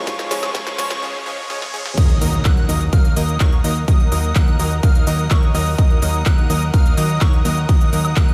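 A straight 4/4 pulse at 126 BPM drives this emotional, euphoric festival progressive house excerpt in Eb minor, opening on an Abm build-up where a bright picked steel-string acoustic guitar with finger squeak and tape echo plays accompaniment in the background until 1.0 s. From 0.1 s an up-front punchy electronic kick re-recorded in a large room joins drum fills on a crisp-hatted, tape-warm big-room kit of snare, claps, shaker, woodblock and crash, all sitting beside a very quiet riser, while a lush, chorused pad holds sustained chords, a catchy, evolving plucky lead spins high arpeggios, and a detuned, airy supersaw stab carries the riff, all three pumping with sidechain. At 2.0 s the drop lands on Ebm with a soft impact and a fat, saturated analog bass holding Eb2 with sidechain pumping.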